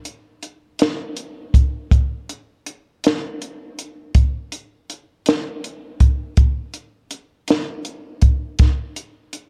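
Blues in a slow 12/8 with a straight feel, this soulful, mournful excerpt features only a compact cocktail drum kit playing hi-hat, kick and snare from 0.1 to 9.5 seconds. The acoustic kit sits up front in a small room, its high-tuned snare and punchy kick carrying a smooth, rolled-off top. Light reverb and a dark production frame the short passage.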